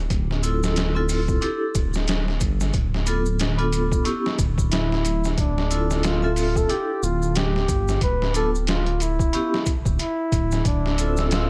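A swung 16th-note groove at 91 BPM in 4/4 anchors this dark, hypnotic trip hop cut, with a sampler-style drum kit of thumpy kick, medium-tuned snare and hi-hat sounding pitched down, muffled and overdriven up front, while maracas shake quietly behind it. A rumbling, detuned sawtooth bass holds the low end in D dorian from the very start, deep and beating. From 0.4 seconds a metallic vibraphone with medium hard mallets rings through shifting chords from Dm9, Dsus24 and Dm6 to Dmadd11 and Dm69, its fast motor tremolo and tape echo adding shimmer. At 4.7 seconds a bucket-muted trumpet takes the jazz-style solo melody, veiled and close-miked with light vibrato, its tone roughened by vintage 12-bit sampler grit and trailed by tape echo. Only at 10.9 seconds does a moody ambient pad creep in far back, slow to bloom with chorus and its own reverb, as the fragment closes in a small, intimate room.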